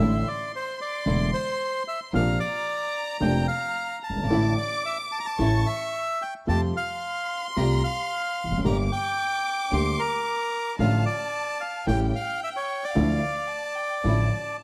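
A rubato tango in 4/4 at 111 BPM, this sultry, melancholic fragment is cut from a longer piece. A reedy, bright bandoneon carries the melody up front, close and full, touched with plate reverb as it ranges from Bb4 to C6. Alongside it, a chamber violin section plays a second line with soft attack, light vibrato and a sul tasto intimacy. A dark, mellow upright piano, slightly detuned, supplies the accompaniment, while a rich studio string section adds focused bowed stabs in the background. A pizzicato upright bass on gut strings gives a thumpy, woody foundation, and the harmony moves from Asus4 and Bbadd9 through Fadd9, Gm and A7 before settling on Dmadd9 at 13.0 seconds, all within a light reverb.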